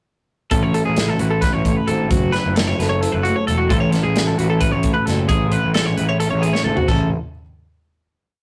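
A rough rehearsal-room recording with tube saturation and moderate reverb frames this brief, playful and intricate math rock and midwest emo piece in A major, driving at 264 BPM in eighths through a straight 7/8 groove, where a twangy, compressed twelve-string electric guitar picks a bright, up-front arpeggio ostinato over a dark, fingerstyle electric guitar rolling arpeggios through A6, F#m7 and Amaj7, a fuzz-overdriven picked bass pushes a syncopated riff, and an airy acoustic kit with bright cymbals, a medium-tuned snare and tight kick plays a fill from 6.5 s before the piece lands on a final chord at 6.9 s.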